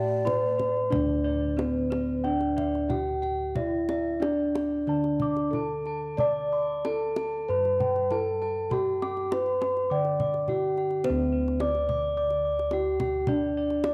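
A small room's ambience and a moderate echo-chamber reverb surround this shimmering, serene Javanese gamelan excerpt in slendro tuning, moving in a straight 4/4. Up front, a close-miked bronze metallophone played with padded disc mallets carries the melody in a soft, full tone, while a second metallophone struck with a horn mallet adds dark, smooth arpeggios and a set of bossed gongs rings out airy, bright arpeggios until 10.8 s. Bossed gongs also supply a round, beating bass with a boxy quality, the kendang enters at 0.3 s with tight, soft-handed strokes, and a hollow bamboo xiao breathes a brief vibrato note only in the first 0.8 s.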